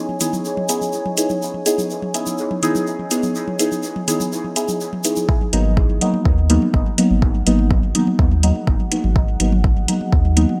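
A deep, mellow chord stab sits up front throughout this dub techno excerpt, its soft, warbling tone colored by chorus and phaser, sweeping through a filter and trailing dub echoes as it pumps against the sidechain over C#m7 and then G#m7. Above it, a dark analog pad holds sustained chords with a slow attack and a moody sub-octave weight, also treated with chorus, phaser and pumping. Overdriven metallic hi-hats, tape-warm electronic toms trailing dub echo, and a grainy egg shaker from a small room fill out the opening rhythm. At 5.3 s the shaker stops and a layered, up-front electronic kick drops in, joined at 5.5 s by a clean, smooth sine sub bass that pumps along with the groove. Light reverb and bright 1980s-style digital production frame the deep, cavernous mood in a straight 4/4 pulse.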